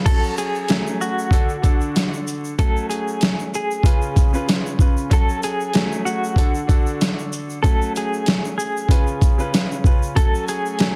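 Dense, heavily limited and dusted with vinyl crackle, this dry, gritty, dark boom-bap hip-hop excerpt at 95 BPM in F# harmonic minor is driven by an up-front, compressed sampler-style drum kit with a thumpy kick and medium-tuned snare, while a smooth, vintage grand piano with cassette-tape colour supplies chords such as F#madd9, D and C#7, a dark, clean, fingered electric guitar carries the melody through tremolo and digital delay, a grainy egg shaker sits in the background, and a distant, very quiet symphonic string section with light vibrato appears briefly at the start and again from 10.2 seconds.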